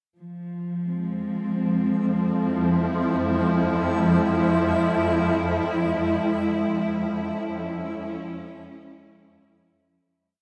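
Unfolding in free time, this dark, ominous ambient drone piece opens with a woody, bowed chamber cello section holding slowly shifting chords from 0.2 seconds, joined at 1.4 seconds by a swarming, detuned granular drone and at 3.2 seconds by a reversed, swelling texture holding a single high note in the background, as the harmony moves from Fm to Dbm and the dreamy mix sinks into a huge, wet reverb.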